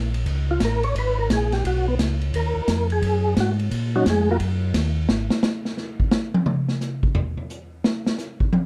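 Soul jazz organ trio in Eb minor, a late-night, smoky excerpt cut from a longer piece, swinging in 4/4 at 174 BPM. A mellow tonewheel organ carries the bass line through a slow rotary speaker, round and clean with a touch of key click, until 5.3 seconds. Above it, a second tonewheel organ takes the melody from 0.5 seconds, its percussive second-harmonic attack set against chorus vibrato and a fast rotary speaker as it solos over Abmadd9 and Ebmadd9 chords. A vintage acoustic drum kit enters at 0.1 seconds and plays nearly to the end with hi-hat, ride, snare, kick and toms, its punchy kick and medium-tuned snare sitting in a small, pumping room with a rolled-off top. From 5.1 seconds the chords drop away and the drums carry a brief solo to the end. Light reverb and a dark production keep the parts close and intimate.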